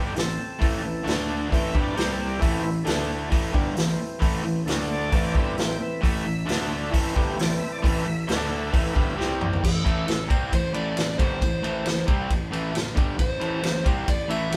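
Blues rock power trio meets southern rock in this gritty, heavy passage cut from a longer piece, moving in a straight four-beat feel. A tonewheel organ takes the solo at the start with thick, sustained chords through a slow rotary speaker, its key click and light overdrive audible until 9.5 seconds. Beneath it, a bright, double-tracked semi-hollow guitar drives a picked, overdriven riff up front, while a growly fuzz bass, picked and overdriven, fills out the low end. The acoustic vintage drum kit sits up front with a tight kick, a medium-tuned snare, dark cymbals and a warm, rolled-off top, and a drum fill at 9.2 seconds leads into the next section. There an overdriven slide guitar enters at 9.7 seconds, playing a dusky, fingered melody over the riff, all captured as a band playing live in one room with moderate studio reverb.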